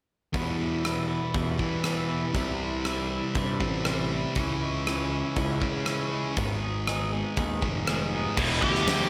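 A big arena sound bathed in wet hall reverb frames this angsty, cathartic quiet-loud alternative rock excerpt in a straight 4/4. A slightly broken-up, compressed guitar picks arpeggios up front over a sludgy overdriven guitar riff, a fuzzy, direct-and-amped picked bass and a big-room acoustic kit with a medium-tuned snare, tight kick, crash, hi-hat and rim click, as the chords move from Em through C, C#m and G#m. At 8.4 seconds the arpeggios stop and a bright overdriven guitar riff enters, joined at 8.6 seconds by a dark, distorted octave-fuzz lead melody.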